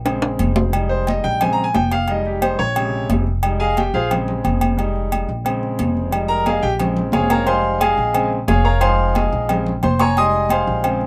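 A short drum fill opens this danceable, passionate salsa excerpt as a bright, brilliant concert grand piano takes an up-front solo with deep bass and long sustain over a woody, growly pizzicato upright bass, while high-tuned, vintage-sounding congas ring in the background and close, dry timbales and agogo bells add a ringing metallic tone, all cycling between Bbm7 and Fm7 in a room with little reverb.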